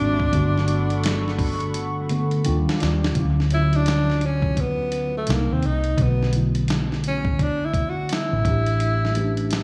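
Sensual and relaxed, this short neo-soul and R&B excerpt moves at an easy, swung pace with a little studio ambience and echo-heavy character. A breathy tenor saxophone sits up front with vibrato and scooped notes in a jazz style, its analog delay trailing behind it, and from 3.2 seconds it moves into a solo. A mellow tine electric piano plays the chords underneath throughout, adding a fill just before the solo begins, while a hollow, flute-like pad with chorus floats above only in the opening seconds. A dark, round, foam-muted electric bass anchors the low end, slightly louder than the other parts. A dusty, gritty sampler-style drum kit enters at 0.2 seconds with a thumpy kick, medium-tuned snare and hi-hat, its own analog delay feeding the echoing mix, and it plays a fill leading into the second section over lush extended chords such as Gmaj9#11, Dmaj9 and A7sus4.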